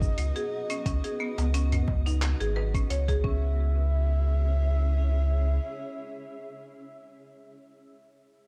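Organic downtempo in C# minor at 88 BPM, this short fragment of a longer piece feels mystical and warm, with a gentle swing on the sixteenths and a move from B to C# minor at 3.2 seconds. A breathy, flute-like synth lead carries the melody with vibrato, subtle chorus and digital delay, floating over a blurred, evolving granular cloud pad whose sustained chords pump against the sidechain inside its own reverb. A buzzing marimba struck with hard mallets plays bright, woody arpeggios through delay until 3.9 seconds, while a round sine sub bass sits up front and holds until 5.6 seconds. The rhythm comes from a gritty, overdriven sampler-style soul kit of cabasa, claves, handclaps and hi-hat alongside a soft, tape-tinged electronic kick, both dropping out before the marimba, with a deep clay-shelled darbuka joining in the background at 1.4 seconds. The production is dark and ambient, leaving the lead and pad to drift on alone toward the close.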